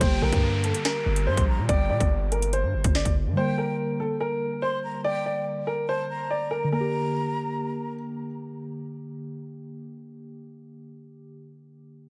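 A half-time 143 BPM drill beat in G minor, cut from a longer piece, opens with hard-clipped kick, sharp snare, metallic hats and a heavy, saturated 808-style bass up front beside an electronic downlifter, all dropping out by 3.4 s, while a dark, worn grand piano with audible action noise carries the menacing melody through tape echo alongside a breathy, vibrato-laden concert flute until 7.9 s, leaving muted, felt-like synth keys shimmering with chorus and tremolo to hold the ominous mood alone until 12.1 s in a light reverb.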